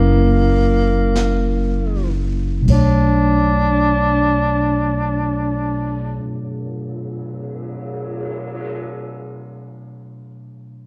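Wistful and intimate, this slow jazz ballad, cut from a longer piece, unfolds with a gentle swing and a tempo that eases back over its opening seconds. A breathy tenor saxophone carries the melody up front in a low register, its whispered subtone, soft attack, vibrato and scooped notes giving it a vintage feel. A mellow, clean tine electric piano, heard through its built-in speakers, supports it with chords moving from F#7 to Bm7 and plays on until 10.9 seconds. Pizzicato upright bass adds a woody, steel-string low end, and both bass and saxophone stop at 6.2 seconds. A brushed drum kit enters softly at 1.2 seconds, with dark cymbals, a cymbal swell and a boomy kick in an airy, polished room sound. Light reverb and the worn, warbling pitch drift of old cassette tape give the recording a hazy, nostalgic character.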